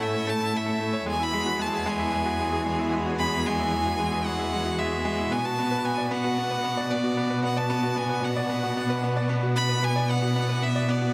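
A straight 4/4 pulse at 113 BPM carries this moving, cinematic piano and strings electronica in B dorian, cut from a longer piece, where a bright, brilliant baby grand piano with long sustain and delay plays an up-front riff as a dark, lush cello section bowed with vibrato and tube saturation holds the bass. A clear, smooth solo violin sings the melody up front while a distant, intense string quartet sustains chords in the background, moving from A to Eadd9 at 1.1 seconds and Bm at 5.3 seconds. A huge ambient reverb with a 7.3-second tail gives the whole 11.1 seconds a spacious, expansive sound.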